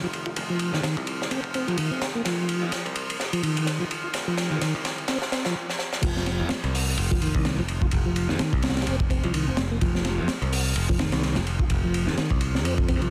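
A dense, heavily limited mix with light small-room reverb frames this funky, energetic breakbeat excerpt at 127 BPM with a 16th-note swing. A mellow, round tonewheel organ riff with key click, fast rotary speaker, chorus vibrato, tube saturation and tape echo moves through a filter sweep over a bright, growly picked electric bass on an F5 chord during a build-up that gives way at 6.0 seconds to a drop. Throughout, a crunchy, gritty, up-front drum kit with a punchy kick, high-tuned snare and dark cymbals, entering at 0.1 seconds, plays fills from 2.3 to 5.6 and 5.7 to 6.0 seconds.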